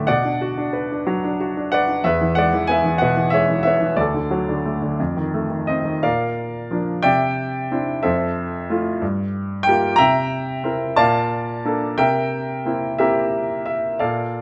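Warm and calm, this lyrical classical excerpt in 6/8 with gentle rubato features a clear, up-front baby grand piano playing solo under light reverb, moving from an opening phrase around Bm, E and D into a second passage from 6.0 seconds that drifts through Bb, Cadd9, Fmaj7, Gm7 and C7 before the cut at 14.4 seconds.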